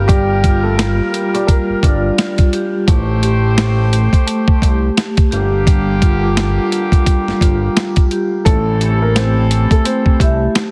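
A swung boom-bap groove at 86 BPM drives this gritty, tough hip-hop excerpt, with an up-front, pitched-down sampler drum kit of thumpy kick, high-tuned snare and hi-hat under a fat, detuned analog bass, while a dark, ringing vibraphone carries cassette-tape grit, tight vintage horn stabs and a woody upright piano melody (heard from 0.1 to 2.8 seconds and again from 8.5 seconds) both trail analog delay, all over Gm7 and Am7 chords in a small room with a heavily compressed, radio-like sound.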